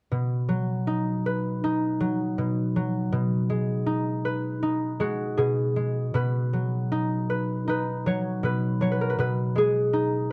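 A mellow, ringing concert harp, fingerpicked and up front, carries the melody from 0.1 to 10.3 seconds in this innocent, sleepy children's piece cut from a longer work, moving between B and G#m/B chords in a dark production with moderate studio reverb.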